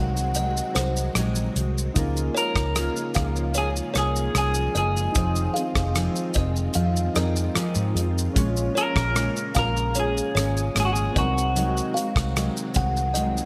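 Hazy, sunny indie bedroom pop, this excerpt sets a slightly broken-up electric guitar melody over fingerpicked dark dreadnought acoustic guitar, a woody kalimba line drenched in lush chorus and delay, soft warbling electric-piano-like synth keys with cassette-tape character, background string-machine violas, a round foam-muted bass up front and a dry, tight damped 70s kit with rim click and shaker entering at 0.2 seconds, all bathed in plate reverb and bright 1980s-style digital production.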